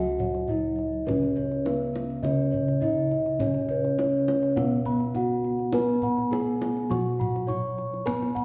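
A bronze metallophone carries the melody up front, its ringing, padded-mallet tone dark and smooth in this serene, shimmering excerpt of Javanese gamelan, cut from a longer piece. The music moves at 103 BPM in a straight 4/4 and sits in C# slendro. Beneath it, a second metallophone plays accompaniment, while a third metallophone and a set of bossed gongs weave arpeggios in the upper register; one of the metallophone parts uses paired tuning that gives off shimmering beats in a boxy, intimate space. Lower bossed gongs supply the bass with a round, beating tone that sounds close-miked, dry and full. A kendang enters at 0.2 s with tight, soft hand strokes, and the whole ensemble sits in a reverberant recital-hall acoustic for the full 8.4 s.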